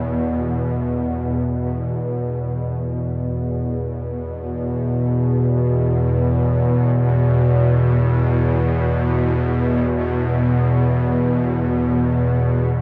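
Dark and unsettling, this free-time ambient fragment, tuned to A4 = 436 Hz and cut from a longer piece, rests on a single bowed-like drone sounding alone from 0.0 to 12.8 s, holding an E5 chord between E2 and B2. The drone is string-like, tense and bright, with a sawtooth edge, unison voices, a noise layer and vibrato; it enters with a slow attack, sustains and fades on a long release, sitting up front in its own reverb. The whole sound is drenched in a huge ambient reverb and the worn, warbling pitch drift of old cassette tape, with the music shifting into a new section at 2.8 s.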